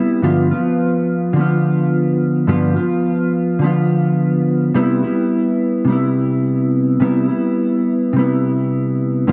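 Laid-back and sunny, this short indie pop passage at 106 BPM in C major features a lone mellow electric guitar, clean, fingered and compressed, sitting up front with analog chorus and vibrato as it moves from G7 to Cmaj7 at 4.8 seconds, all bathed in a wet spring reverb within a dark production.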